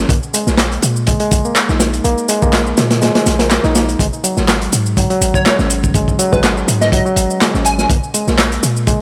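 A bright, reedy electric piano sits up front, playing a riff from the opening through a light overdrive, tube saturation and tape echo, its tone colored as if through built-in speakers. This gritty, energetic breakbeat excerpt moves at 123 BPM in 4/4 with a 55% swing on the sixteenths, tuned slightly sharp to A4 = 445 Hz. Underneath, an 808-style bass gives a deep, boomy sine tone with a noise layer, a fast attack and a mellow decay, while a crunchy acoustic breakbeat kit of kick, snare and hi-hat sounds dark, saturated and punchy from a small room with its top rolled off. Overdriven electronic shaker and handclaps are layered alongside, re-recorded in a large room for a produced edge. At 5.4 seconds a plucky, catchy unison lead of detuned square and sine waves enters with a filter sweep, small-speaker coloring and tape echo, sustaining until 7.9 seconds over harmony that moves from A#7sus4 to G#7 with its third omitted and lands on A#5. 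The whole recording is dry and gritty, with light reverb, studio ambience and transformer saturation.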